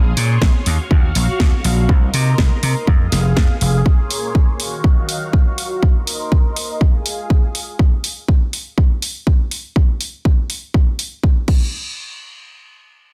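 A punchy, tape-warm electronic kick sits up front in this funky, groovy filtered disco house cut at 122 BPM with a light 16th-note swing, arriving just after a house kit of cracking snare plus crash and hi-hats pumping to the sidechain, while an amped, up-front vintage slap bass, pumping and low-pass filtered, drops out at 3.8 seconds and a lush sawtooth string machine with sub octave, slow attack, phaser, ensemble chorus, sidechain pumping and a low-pass filter sustains Bbm9, Ebm9, Cm7 and Fm7 chords until 7.8 seconds, leaving the drums to carry on to 11.6 seconds in a dry, dense, heavily limited mix.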